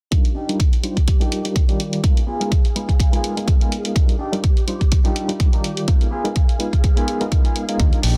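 A punchy, up-front electronic kick and analog hi-hats drive a swung, sunny and funky filtered disco house groove under a filter sweep, with a barky, lightly overdriven reed electric piano pulsing through fast tremolo and phaser, a swirling sawtooth string machine sustaining Ebmaj7 and Abm6 chords in the background, and a dark, clean picked electric guitar riff roughened by 12-bit sampler grit, while a bright fingered electric bass and a barely audible tambourine slip in only at 7.8 seconds of this dense, heavily limited cut from a longer piece.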